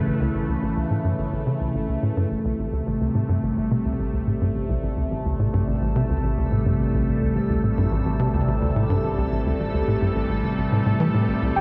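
Ambient, sequencer-driven space music in A minor at 107 BPM, mysterious and hypnotic, with a bright, swirling phased analog pad sustaining chords over a tight, punchy sequencer bass riff with filter pluck, lush chorus and tape echo, moving from A to Am7 at 2.3 seconds. A round, deep analog bass joins in the background at 2.3 seconds, and a bubbling, resonant stepped-filter texture fades in from 3.3 seconds with shimmer reverb, while a soft octave-layered lead with vibrato sounds a single G5 at 11.6 seconds. The cut sits in a lush hall reverb and carries the warble and pitch drift of worn cassette tape.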